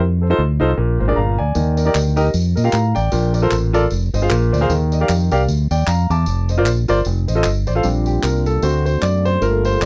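A swung 153 BPM pulse in 4/4 drives this reverent, soulful uptempo gospel in Bb major, where a round, dark fingered electric bass opens at 0.0 seconds beneath a clear grand piano with audible action noise and long sustain, tambourine and dry group handclaps join at 1.6 seconds, and at 7.8 seconds the piano takes a solo over a mellow French horn section holding sustained chords with light vibrato in the background, all captured in a dry, close 1970s-style studio sound.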